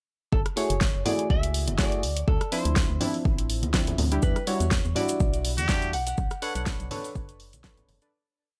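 At 0.3 seconds a moody, hypnotic deep house groove begins with a dark, clean hollow-body jazz guitar picking call-like motifs through tape echo, over a hollow, organ-like FM bass in a dotted rhythm that pumps against a deep, tape-tinged four-on-the-floor kick. A programmed kit of closed and open hats, rim clicks and a fat backbeat snare joins almost at once, along with soft, evolving chord stabs whose single mellow shape shifts in parallel through minor-ninth harmony, shimmering with chorus and breathing with the sidechain. Soft-handed congas sit in the background with syncopated, band-limited hits, and a grainy cabasa adds hand-played sixteenths from 4.2 seconds. At 5.6 seconds a nasal, straight-muted trumpet cuts in with short, raspy, growling phrases, close-miked, with light vibrato, 12-bit sampler grit and tape echo. The whole piece stays in one dry, swung drop that fades out over its final seconds.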